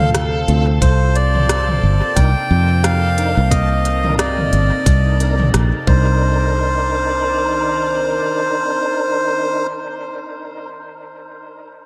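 A hazy, deep ambient dub excerpt sits in a light digital ambience, cut from a longer piece, with a gently swung groove. A reedy, breathy melodica carries the melody up front through dub echo, over a calm, sine-pure organ-like pad that holds sustained chords in the background with ensemble chorus, reverb and a touch of vintage 12-bit sampler grit. A round, foam-muted fingered electric bass anchors the low end until 8.2 seconds, while a mellow tonewheel organ with key click, chorus vibrato and fast rotary speaker adds echoing stabs. Tape-warm electronic drums, re-recorded in a large room, bring crisp hats, rim clicks and toms through dub echo, joined by a tight electronic kick from 0.8 to 6.0 seconds. A reversed, detuned granular texture swells dreamily in the background, and the harmony moves from Dm7 to Cm9.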